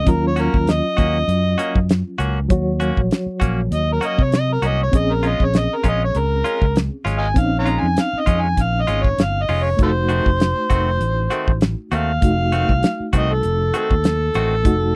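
Opening at once with a gritty, overdriven harmonica soloing up front in a jazz style, full of vibrato, tongue slaps and scooped notes, over a reedy electric piano with fast tremolo and a punchy fingered electric bass, this soulful, smoky straight-eighth soul blues excerpt quickly brings in a damped 1970s drum kit with a fat snare and tight kick, plus twangy, clean, direct-recorded electric guitar stabs, in a dry, close 1970s-style studio sound.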